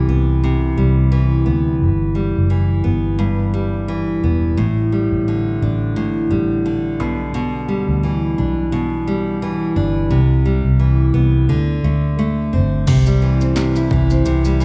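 Sunny and easy-going, this short acoustic pop passage is cut from a longer piece and moves with a gentle swung lilt in four. A bright, up-front nylon-string guitar, fingerpicked in a classical manner with fresh strings, carries the accompaniment throughout, its notes touched by a slapback echo. Beneath it, a vintage electric bass, foam-muted and played with the fingers, adds a dark, round, amped foundation. The harmony drifts through Cmaj7, G6 and a suspended D chord before settling on C. At 12.9 seconds a punchy analog drum machine joins with kick, snare, shaker and crash cymbal, sitting lower in the balance than the guitar and bass. The whole performance sounds like a live gig heard through a club's PA, with a light wash of room reverb.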